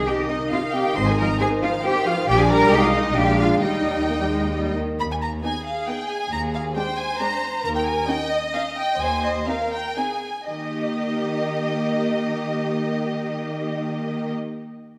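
In a straight triple metre, this lively, spirited classical-period movement for string orchestra, cut from a longer piece, sets a lush, up-front first violin section singing the melody with expressive vibrato, while a clear, more distant second violin line and smooth-topped violas fill the harmony beneath. A bright cello section carries the bass throughout, joined by focused double basses only from 1.0 to 4.8 seconds, as minor-tinged chords resolve toward the home major. The pace slows between 7.0 and 10.5 seconds, and the whole ensemble sits in a wet scoring-stage reverb.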